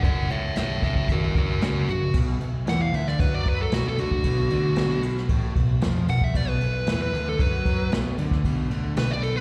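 Blues rock in the power-trio mould with a southern rock edge, this smoky, brooding excerpt moves at 114 BPM in B minor, opening on an F# chord before settling onto Bm at 2.1 seconds, where the dark, up-front fuzz lead guitar takes a picked solo through its distortion, slapback echo and digital delay. Beneath it a crunchy, double-tracked overdriven guitar plays the riff with slapback echo, a bright, growling fingered electric bass adds overdrive to the low end, and a jazz brush drum kit with dark cymbals, a boomy kick and a rolled-off top keeps time on crash, ride, hi-hat, snare and kick. The whole performance sounds like a live gig heard through the venue's PA, with small-room ambience and recital-hall reverb.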